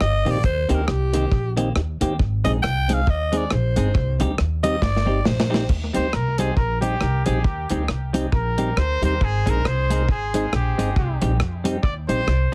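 Ska at 137 BPM in Eb major, swung and joyful, this upbeat excerpt cut from a longer piece moves through a cycle of Eb6, Ab and Cm chords. A breathy, raspy alto saxophone carries the melody first, its gritty tone marked by vibrato and scooped pitches, until a drum fill from 4.8 to 5.7 seconds hands the lead to a trumpet that plays from 6.0 seconds with a distant, roomy quality and a touch of tape echo. Underneath, a woody, thumpy upright bass sits up front beside a deep reggae drum kit whose dry, dark sound features a tight kick, a medium-tuned snare, rim clicks, hi-hat and crash, with a rolled-off top and tape echo. A clean, picked electric guitar adds compressed accompaniment through a lush chorus, while a mellow, flute-like tonewheel organ supplies soft stabs with audible key click, a slow rotary speaker and tape echo. The whole mix has a heavily compressed, radio-like sound in light reverb.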